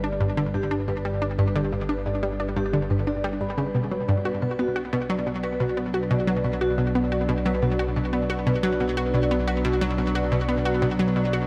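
A bright, detuned analog pluck riff sits up front with chorus, delay and shimmer reverb in this cosmic, expansive stretch of sequencer-driven ambient space music at 89 BPM, while a metallic, ringing vibraphone plays arpeggios through delay and shimmer, a mellow, morphing wavetable pad fades in beneath with sustained chords, and a fat, thick analog bass anchors the move from G to Bm at 4.3 seconds, all set in a moderate plate reverb.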